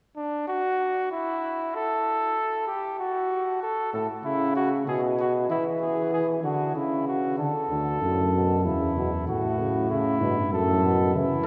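Bathed in a wet cathedral reverb over a small room ambience, this joyful, stately classical canzona for brass ensemble moves at 96 BPM in 3/4 in D major, and is cut from a longer piece. A warm flugelhorn carries the second line from 0.2 seconds, a euphonium with light vibrato joins as accompaniment at 3.9 seconds, and a mellow bass trombone with a soft attack supplies the bass from 7.7 seconds. The imitative writing passes through colourful harmonies such as C#madd11 and F#madd11, with the second section arriving on a D chord.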